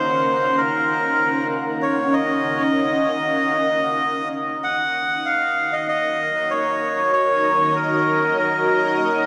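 A reedy, breathy melodica carries the melody over a cloudy, evolving granular pad of sustained chords from the start of this meditative, hazy ambient excerpt at 96 BPM in Eb minor, resting on an Ebm7 chord, with the melodica roughened by vintage 12-bit sampler grit and dub echo, the pad shimmering with analog chorus and its own built-in reverb, and the whole dreamy mix soaked in a lush hall reverb.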